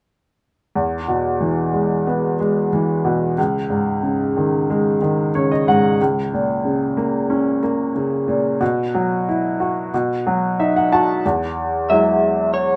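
A clear upright piano with a woody tone and audible action noise carries this hopeful, intimate folk piece at 92 BPM in E major, tuned to A4 = 436 Hz, before a slightly broken-up electric guitar through a small old amp adds a brief tremolo melody at 11.9 s, all in a moderate studio reverb.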